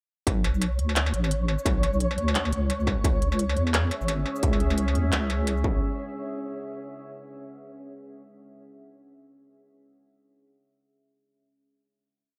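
Cinematic and heavy, this short half-time drum and bass piece at 173 BPM in B dorian drops in at 0.3 seconds with a deep, wobbling bass gliding through long notes, a distorted, up-front electronic kick and a sparse industrial kit of crisp hats, shaker, claps and struck metal, while a grainy, flickering texture holds a high note and a dark, full-bodied pad with sidechain pumping joins at 3.6 seconds over Bm and C#m chords before a final hit at 5.8 seconds, all set in light digital ambience.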